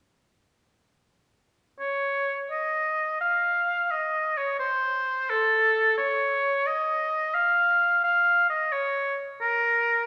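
The rhythm moves freely in a rubato 3/4, with a pulse around 87 BPM that bends and breathes rather than holding strictly to the beat. This is a classical, baroque-style fantasia for unaccompanied oboe, grave and solemn in mood, and the clip is cut from a longer piece. The oboe enters at 1.8 seconds and plays alone until 10.1 seconds, moving between A4 and F5 with a warm tone, a light vibrato and a smooth top. It sits up front in the sound, tuned to A4 = 442 Hz and played in a classical style. Around it, a wet recital-hall reverb with a 1.6-second decay and the ambience of a church or concert hall lend the single line a spacious setting.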